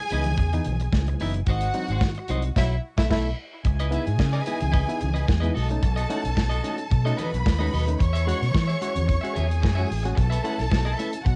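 A lush, vibrato-rich studio violin section with analog delay and a slightly broken-up, compressed electric guitar with tremolo open this celebratory, glamorous disco excerpt at 110 BPM, joined by a gritty, barky reed electric piano, an up-front overdriven fingered bass, a dry soul drum kit with dark cymbals and a tight kick, and very quiet, distant, high-tuned congas, the band hitting a shared accent from 2.6 to 3.7 seconds over a B7sus4 chord, all under light reverb with the hazy tint of a home cassette recording.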